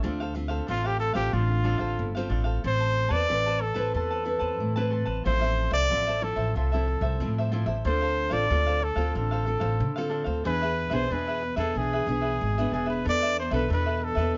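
A lightly reverberant recording with a softened, rolled-off top end carries this lively yet bittersweet samba fragment in A harmonic minor, moving at 92 BPM in a straight 4/4. A close-miked trumpet, warm with light vibrato and a touch of plate reverb, takes the jazz-style solo melody up front from 0.7 seconds, beside a woody pizzicato upright bass on steel strings. Behind them, a crisp picked cavaquinho and a bright, fingerpicked classical nylon-string guitar on fresh strings comp through chords like Dm7, Amadd9 and E7, closing on E7sus4 at 13.1 seconds.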